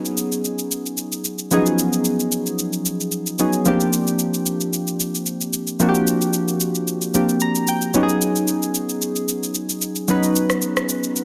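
Bathed in a lush hall reverb and pressed into a dense, heavily limited modern master, this deep, late-night amapiano excerpt sets round, detuned analog keys with chorus and a filter sweep, shifting between C#9sus4 and C9sus4, over an up-front electronic shaker and rim click swung on the 16ths, with a brief keys fill at 7.1 seconds.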